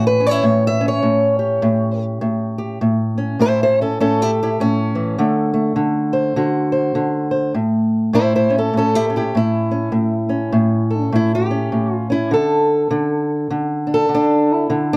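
A loping swing on the eighth notes drives this acoustic country blues at 101 BPM in 4/4, giving the short excerpt, cut from a longer piece, a gritty, rollicking mood. A lone fingerpicked guitar carries everything, an old ladder-braced steel-string instrument that sounds dark, woody and boxy, with the dull bite of old strings. It sits up front across the full 15.0 seconds, ranging from A2 up to E5 in A mixolydian, tuned a touch sharp with A4 at 444 Hz. The harmony moves from A7 to A at 2.8 seconds, then to D7 at 5.2 seconds, back to A7, and on to a bare D5 near the close. A light reverb gives the guitar a little air around its dark, woody tone.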